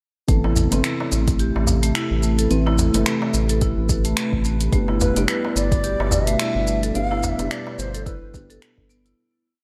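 Earthy and mystical, this short organic downtempo piece in A minor moves at 108 BPM with a lightly swung sixteenth feel, moving from Amadd9 to G over a soft, deep electronic kick, a tape-toned deep house kit of finger snaps, closed hi-hat and shaker, and a clay-shelled darbuka struck with hard hands. A round, up-front analog bass plays a dotted rhythm while a detuned, warbling analog pad with chorus holds slowly shifting chords, a boxy felt-muted upright piano sits in the background with held chords and syncopated pushes, and a marimba with hard mallets repeats a percussive, dark arpeggiated step sequence through analog delay, with the bass, piano and pad pumping under sidechain. At 5.0 s a breathy cedar flute with chiff and vibrato enters with expressive call phrases through analog delay, all set in light reverb and small room ambience as the piece fades out from 6.2 s.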